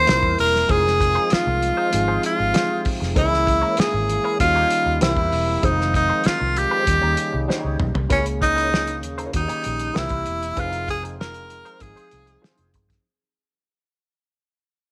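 A straight 4/4 groove at 97 BPM drives this lush 1970s-style soul excerpt, its smooth mood set by a cloth-damped drum kit with a fat snare and tight kick, and a dark, round, foam-muted fingered electric bass. Up front, a bright tenor saxophone carries the melody with vibrato and scooped notes over a reedy, lightly overdriven electric piano, while a clean hollow-body electric guitar plays a wah-colored riff and a distant, mellow French horn section holds sustained chords in the background. Chords move through C7, Fm7, Dbm6 and Eb7 under light studio reverb, and after a drum fill at 7.5 seconds the music fades out from 8.1 seconds.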